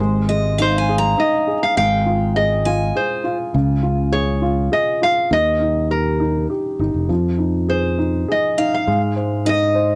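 Hopeful and intimate, this acoustic folk-pop ballad moves at 101 BPM in 3/4 in Ab major, cut from a longer piece and captured as a lightly reverberant home recording on cassette with a softened top end. A full-bodied nylon-string guitar carries the fingerpicked melody from 0.6 seconds with audible finger squeak and a tape-tinged tone. A dark, boxy baby grand piano with short sustain and audible action noise, plus a direct, amped electric bass, sits up front beneath it, while a bright dreadnought steel-string guitar plays arpeggios through analog delay, dropping out at 3.8 seconds and returning at 8.6.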